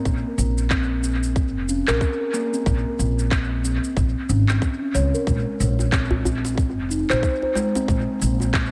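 Organic downtempo at 92 BPM in Bb minor, earthy and warm, this short excerpt cut from a longer piece sets round, ringing steel tongue drum arpeggios struck with rubber mallets and bathed in dub echo over a woody pizzicato upright bass with tube saturation and sidechain pumping, a tight, tape-toned electronic kick up front, echoing electronic shaker and handclaps, and a close, dry djembe played with hard hands that enters at 5.8 s, all moving from Bbmadd9 to Ab at 5.3 s with a 16th-note swing in an echo-heavy mix with spring reverb.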